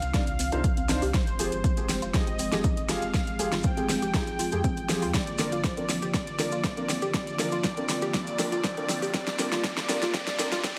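A moderate scoring-stage reverb with a 1.7-second decay and a digital ambience wraps this dreamy, emotional progressive house passage, cut from a longer piece, at 120 BPM in straight 4/4. The whole span is a build-up: filter sweeps move across the glassy wavetable pluck arpeggios, the felt-muted upright piano stabs and the analog pad, while a drum fill runs throughout and a very quiet electronic riser joins at 6.7 seconds. A punchy, overdriven electronic kick and an up-front deep house kit with a fat snare and metallic hats lead the mix, joined by faint, grainy maracas. A saturated sine sub bass sits deep in the background, pumping under sidechain alongside a chorused, detuned sawtooth pad with a gentle attack and 12-bit sampler grit. Above them, a smooth unison supersaw carries the melody with digital delay, the crystalline pluck arpeggios ripple with chorus and delay, and the intimate upright piano, mellow and soft with audible action noise, adds low-passed stabs. 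The harmony moves from Cmadd9 to Fmadd9, then Bb/F at 5.1 seconds, before settling on Gm7.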